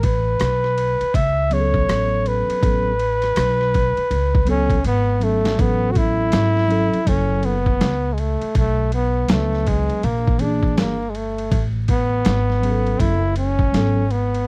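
A laid-back 81 BPM groove in 4/4, swung at 63% on the 16ths, drives this relaxed jazz-hop cut from a longer hip hop piece in A major. The trip hop sampler-style drum kit sits up front, compressed, pitched down and overdriven, with a thumpy kick, a medium-tuned snare, rim clicks, hi-hat and ride that sound re-recorded in a large room, and a fill arrives at 4.8 seconds. Beneath it, a pizzicato upright bass with steel strings plays woody, dark low notes, while a mellow tine electric piano, clean and heard through its built-in speakers, enters at 1.5 seconds to voice chords moving from A69 through F#m7, Bm and a colourful Bb7#11 before settling back on A69. Leading the way is a breathy flugelhorn solo in jazz style, intimate and whispered, with a soft attack and gentle vibrato. The dry, close 1970s-style studio sound carries light reverb and a layer of vinyl crackle, giving the whole a cosy, unhurried glow.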